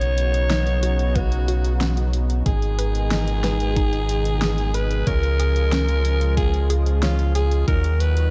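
Dark, lightly reverberant production frames this moody, nocturnal synthwave excerpt at 92 BPM, where a breathy, raspy alto saxophone sings a pop-style solo with vibrato and scooped notes through tape echo over soft, detuned supersaw chords pumping with sidechain, a round analog bass sitting deep and up front, chorused analog pluck arpeggios with tape echo tucked in the background, and an overdriven pop kit of fat snare and hi-hats, joined at 1.2 s by a knocking electronic kick, as the harmony moves from Badd9 through Abm and Db to Ebm.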